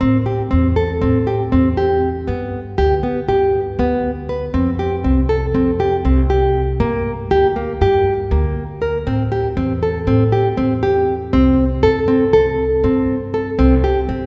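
Bathed in a long, wet church reverb, this short passage cut from a longer piece is restless and playful contemporary chamber music in an uneven 9/8. An up-front, boxy nylon-string guitar fingerpicks arpeggios over a woody, thumpy pizzicato upright bass with gut strings, both playing throughout. The harmony moves from Am7 through G, Fsus2 and Gm, then returns to Am7 before settling on C5.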